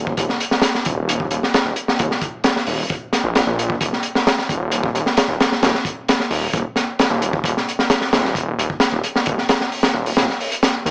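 A crunchy breakbeat drum kit with a punchy kick, high-tuned snare, hi-hat and a dark, rolled-off top drives this energetic, playful breakbeat excerpt at 132 BPM in a straight 4/4, entering at 0.1 s over a thick, menacing detuned saw bass that beats with heavy saturation from Eb1 to Eb2, both held up front in a dry, small-speaker sound.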